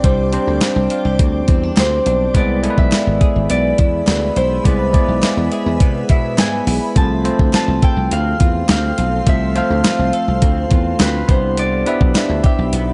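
A dark, lightly reverberant production gives this glossy, romantic slice of 1980s-style pop at 104 BPM a soft-focus sheen, with a fingerpicked, ringing Celtic harp carrying the melody through digital delay over bell-like tine electric piano chords moving from Csus2 through E and F to Em7. Up front, a thumpy 12-bit drum machine with tambourine, re-recorded in a large room, sits beside a punchy, foam-muted thumbed slap bass, while a compressed clean guitar riff bathed in lush chorus and an ethereal, detuned sawtooth pad with phaser and slow attack hover in the background. A hollow, barely audible group handclap joins at 0.6 seconds and drops out at 12.3 seconds.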